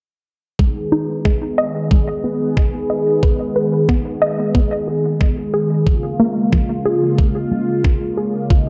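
A swirling, detuned analog pad anchors this short synthwave excerpt, its sawtooth chords moving through a phaser and chorus with a soft attack, long release and a sidechain pumping that makes the sustained harmony breathe around the beat. Set at 91 BPM in a straight 4/4 and in G# dorian, the mood is nostalgic and nocturnal, with the harmony resting on G#m before shifting to A#m7 at 5.9 seconds. Beneath the pad, a warbly, dusty pluck spins arpeggios from a lo-fi blend of pulse, sawtooth, sine and a noise layer, its fast attack and short decay colored by chorus, tape echo and a filter sweep that runs through its whole span. A thumpy, sampler-style electronic kick sits up front, tape-softened and re-recorded in a large room. All three parts enter together at 0.6 seconds, and the dreamy mix is soaked in a moderate plate reverb that lets the sound hang in the air.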